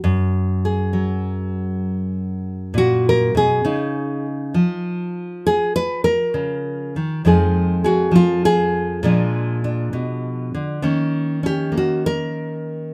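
A bright, full-bodied nylon-string guitar, fingerpicked and up front in light reverb, plays this swinging, playful solo jazz passage cut from a longer piece, its deep classical tone ranging from F2 up to Cb5 as it moves through Gbadd9, Dbadd9, Fm7, Bb7b9 and Ebm7 over 12.9 seconds.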